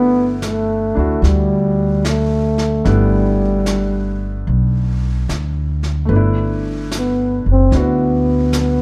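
A mellow, close-miked trombone carries a late-night jazz ballad melody from the first moment, its light vibrato and punchy, forceful tone sitting up front over a clear baby grand piano with audible action noise and a woody, pizzicato upright bass, all opening on a G6/9 chord. Brushed drums from a studio room enter at 0.4 seconds, quietly adding brushed snare and hi-hat beneath the lilting swing feel. At 6.1 seconds the trombone moves into a solo, and this intimate fragment of a longer piece closes in dark, gently reverberant production.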